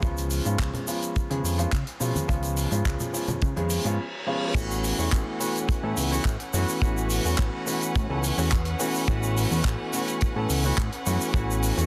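Sunny and feel-good, this nu-disco excerpt rides on a dry, tight kick up front and a small-room funk kit of hi-hat, shaker, handclaps and crash. A fat sawtooth-and-square analog bass with a filter sweep and a moving notch holds the low end, while a clear, slightly worn grand piano sits up front, pumping with the sidechain and trailing dub echo over a C#7 chord. Soft-handed, low-tuned congas play in the background early on, and an electronic reverse cymbal from 3.7 s leads through a short break into the drop at 4.6 s, where a smooth, bowed chamber violin section adds sustained, vibrato-laden chords on an A69 harmony, pumping behind the piano inside a dense, heavily limited master with light reverb.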